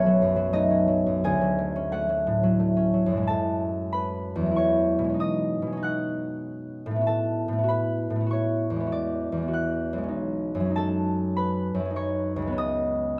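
Mysterious and gentle, this short passage from a longer classical solo harp piece drifts in a rubato 3/4 at roughly 82-102 BPM in F# dorian, with the concert harp fingerpicked up front in a ringing, acoustic tone that spans B1 to F#6 through rich extended chords such as F#m9, E9 and B69 before arriving at C#7sus4 near 12.6 seconds, all bathed in the wet reverb of a stone room.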